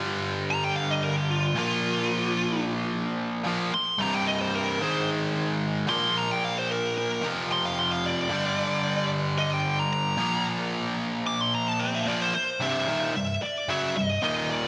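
Rock in an anthemic, energetic mood, where a biting, double-tracked overdriven rhythm guitar sits up front playing a low riff while a dark, high-gain lead guitar with distortion and digital delay enters at 0.5 s for a solo that runs to 12.6 s, all set in a lush hall reverb with a bright 1980s-style digital sheen in this cut from a longer piece.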